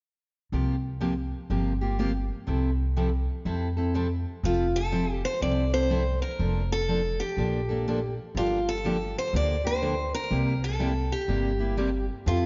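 Swinging and playful, this short cut of acoustic string swing in the gypsy-jazz manner opens with a boxy parlour-style steel-string guitar picking chords alongside a woody, thumpy pizzicato upright bass on gut strings, both up front. At 4.5 seconds a second picked steel-string guitar, a bright, full-bodied dreadnought with fresh strings, takes the melody, its line carrying a slapback echo as the harmony moves from a suspended dominant through major sevenths toward Gm7 and C7. The production is dark and warm, set in a concert hall reverb that lends the small group a roomy glow.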